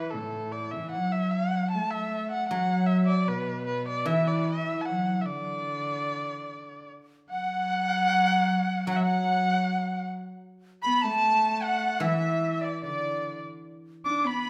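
A bowed erhu carries the melody from the first moment, sitting up front with vibrato and gliding portamento in a smooth, even line, giving this graceful, pastoral fragment of a Chinese chamber piece its lyrical voice. Beneath it, a single bowed cello holds a second line with a soft attack and a pure, floating tone. A guzheng played with fingerpicks adds ringing, silvery accompaniment low in the mix, falling silent at 6.5 seconds and returning at 8.9 seconds. At 7.3 seconds, as the music moves into its second section, a bamboo dizi joins with a second line that is bright and buzzing, tongued and expressive, with its own vibrato. The rubato phrasing in 2/4 breathes freely within the moderate reverb of a recital hall, which lends the ensemble a gentle, natural space.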